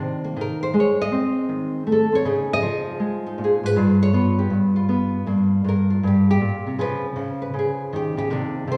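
Solo jazz on a lone nylon-string guitar, this short excerpt from a longer piece carries a late-night, swinging mood in 4/4 with a lilting triplet feel on the eighth notes. The guitar plays fingerpicked in a classical manner from start to finish, ranging from G2 up to Eb5 and sitting up front in the mix. Its tone is dark and woody, with the dulled character of old strings giving the notes a softened, aged quality. The harmony moves through rich chords such as Cm9, Dbadd9 and G7#11 before settling into G minor at 5.3 seconds with a Gm7 and then a C#7. A wet recital-hall reverb, tailing off over 1.6 seconds, wraps the instrument in the resonant air of a church or concert hall.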